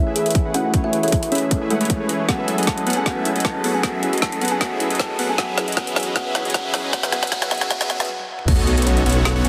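Dreamy and bittersweet, this short future bass passage in C# minor moves at 155 BPM with a half-time feel, building steadily before dropping at 8.5 seconds. A woody, ringing kalimba carries the melody with tape echo and sidechain pumping, while a big, bright polysynth riff, fat and wave-folded, pumps alongside it up front under a filter sweep. Beneath them, a round, tine-like synth pluck spins chorused arpeggios with dub echo in the background, and a very quiet, airy, breathy pad holds slow-attack chords until 8.1 seconds. A trap kit with a woody, soft-clipped snare, metallic hats, crash and toms is joined by a hard-clipped electronic kick, playing fills through the build before a brief stop, as a riser and sub drop sit in the background. At the drop, a thick, detuned saw bass arrives on a B7 chord with chorus and sidechain pumping, capping a dense, heavily limited mix with light reverb over a progression of Amaj7, F#m11 and C#m7.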